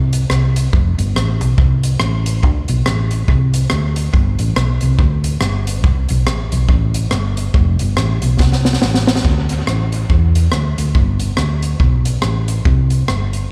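Bouncy, cheerful ska with a swung eighth-note feel, heard as a live gig through the venue's PA with a touch of club reverb. A dark, round hollow-body short-scale electric bass, fingered and amped, sits up front, while an airy, polished big-band drum kit with a high-tuned snare, punchy kick, hi-hat and rim click carries a dub echo. A drum fill at 8.4 seconds leads into a new section at 9.2 seconds before this cut from a longer piece ends.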